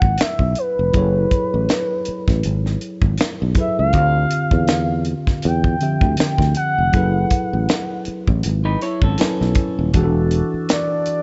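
A smooth, gliding portamento lead with chorus and vibrato carries the melody up front in this late-night neo-soul and R&B excerpt, over a worn, slightly out-of-tune tine electric piano and a tight funk drum kit with a high-tuned snare, all set in a small room. A bright, growly fretless bass sustains beneath until 10.6 seconds, while a slightly broken-up electric guitar through a small old amp adds a brief picked second line from 8.7 seconds. At 9.9 seconds a full tonewheel organ with key click and slow rotary speaker enters low in the mix on sustained chords as the harmony moves to E9sus4.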